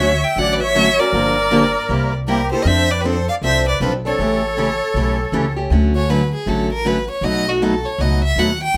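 A moderate studio reverb gives this short cut from a longer piece of charming, swinging gypsy-jazz string music a tidy sense of space, with a clear, focused bowed violin carrying the melody up front over a fresh-stringed, picked parlour acoustic guitar and a woody, thumpy pizzicato upright bass on gut strings. A reedy, shimmering musette accordion adds a second line until 5.5 seconds, after which the violin, singing with vibrato, takes a solo from 5.7 seconds to the close as the chords move from Dmaj7 through Gm7, C7 and A7 to B7.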